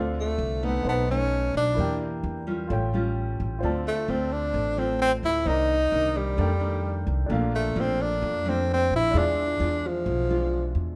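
A straight 4/4 bossa nova groove at 130 BPM in D minor sets a melancholic, wistful mood, as a woody, thumpy pizzicato upright bass and a warm, fingerpicked nylon-string guitar play alongside an intimate concert grand piano with audible action noise, while a breathy, close-miked tenor saxophone carries the jazz melody up front with subtone and vibrato from 0.2 to 10.8 seconds in a light reverb.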